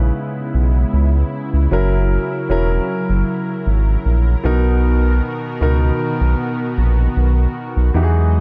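Contemporary R&B in a moody, sensual vein, this short cut from a longer piece moves with a lightly swung 16th-note feel over C#m7, F#7 and Bmaj7 chords. A round, deep analog bass sits up front, while a natural-sounding concert grand piano plays accompaniment and a lush, airy unison pad with detuned layers and chorus holds sustained chords. The dark, warm production places all three parts together in a small room ambience from start to finish at 8.4 seconds.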